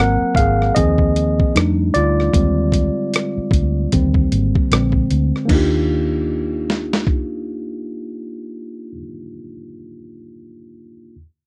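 Sensual and soulful, this short neo-soul R&B clip cut from a longer piece moves at 76 BPM in 4/4 with a swung sixteenth-note feel in Eb major, tuned slightly low. A worn, slightly out-of-tune tine electric piano sits up front through a low-pass filter, carrying a solo with a filter sweep over the first 5.5 seconds across lush extended chords such as Ab9, F13 and Fm13 before settling on Ebmaj9. Beneath it, a dark, foam-muted fingered electric bass with a round, punchy, amped tone holds the low end until 9.0 seconds. A gritty, compressed, pitched-down sampler-style boom bap kit, up front with a thumpy kick, medium-tuned snare, rim click, hi-hat and crash, drops out at 7.3 seconds, and once the bass stops the piano rings alone until 11.2 seconds. The sound is dry and close, like a 1970s studio recording with little reverb.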